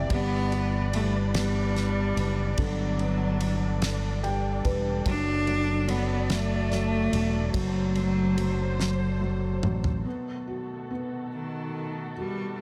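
A dramatic, aching six-eight pop ballad at a slow 48 BPM, cut from a longer piece and set in a small room. A clear, intense bowed cello with vibrato carries the melody over an intimate felt-muted upright piano with audible action noise, veiled con sordino strings holding distant sustained chords, a punchy, up-front fingered electric bass, and a damped 70s drum kit with dark cymbals and a fat snare. The piano plays a fill at 3.8 seconds and the drums one at 8.8 seconds, then bass and drums stop at 10.0 seconds, leaving cello, piano and strings as the harmony moves to B7.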